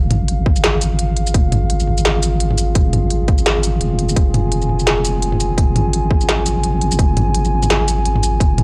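Dry, gritty and tape-worn, this tense, cinematic half-time drum and bass excerpt at 170 BPM in F minor holds on an Fm chord as a deep, wobbling sine-and-triangle bass and a moody, nasal, detuned analog pad with 12-bit sampler grit and sidechain pumping sustain under an up-front industrial kit of clanging snare, crisp hats, shaker and toms, joined at 0.5 seconds by a hard-clipped, overdriven electronic kick.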